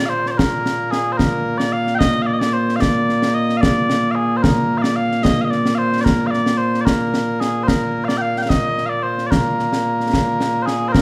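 Mellow small bagpipes open the recording at 0.0 seconds, carrying a sweet, continuous melody up front that spans Bb2 to G5. A concert snare drum and concert bass drum join at 0.3 seconds, sounding acoustic and close, with bright cymbals adding sparkle. This is ceremonial, stirring Scottish traditional pipe music in Bb mixolydian, set in a straight 6/8 at 74 BPM counted in dotted quarters. The pipes hold a solo melodic role throughout, while the drums sit slightly lower in the mix. The players perform together in one large studio room with a moderate reverb that rounds out the sound, and the passage is cut from a longer piece, ending at 11.0 seconds.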